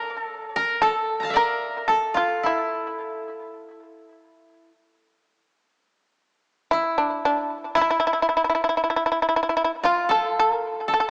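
A calm, austere passage of Japanese traditional music, cut from a longer piece, opens with a buzzing, percussive plectrum-plucked shamisen melody carrying tape echo over a dry, woody koto second line in a free, rubato 2/4, the koto playing alone from 3.2 to 6.7 seconds before the shamisen returns, all in a hall reverb with the small-speaker character of a home cassette recording.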